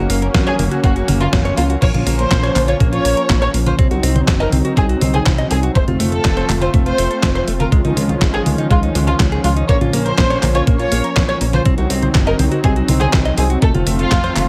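A warm analog pad holds sustained chords from the very start, its detuned sawtooth and triangle tones warbling through chorus, while a clean, direct-recorded electric guitar picks compressed arpeggios through delay and a glossy, chorused synth bass with a filter pluck anchors the low end. This is a nostalgic, danceable Italo disco excerpt in Bb minor at 122 BPM in straight 4/4, cut from a longer piece. A detuned 8-bit drum machine enters at 0.1 seconds with congas, crash cymbal, handclaps, hi-hat and a medium-tuned snare, all wrapped in gated reverb and re-recorded in a large room, and a thumpy electronic kick joins at 0.3 seconds as the loudest part. From 0.5 seconds a dark symphonic violin section carries the melody, bowed with vibrato and portamento, lush and expressive, its sound roughened by vintage 12-bit sampler grit and echoed by digital delay. After a brief opening on Gb, the harmony cycles through Bbm, Cdim, F and Dbadd9 under a light reverb.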